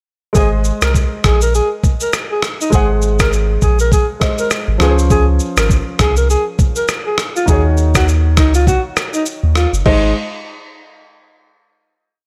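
Sunny and breezy, this short afrobeats piece drifts along on a gently swung groove. A gritty, sampler-style drum kit sits up front with a thumpy yet soft kick, syncopated rim clicks layered with finger snaps, shaker and a crash cymbal, all carrying a tape-toned, compressed character and the air of a large room. Underneath, a deep sine sub bass with a punchy pitch-drop attack plays a bouncy, syncopated line with slides, while a polished baby grand piano holds spread-voiced chords dressed with grace notes, moving from Ab through Dbmaj7 and Ebm7. A breathy, whispered alto saxophone carries the syncopated hook in an intimate pop style, with soft attacks, gentle vibrato and a touch of tape echo. The verse resolves onto a final Ab chord at 9.9 seconds, which rings out through a digital ambience until 12.2 seconds.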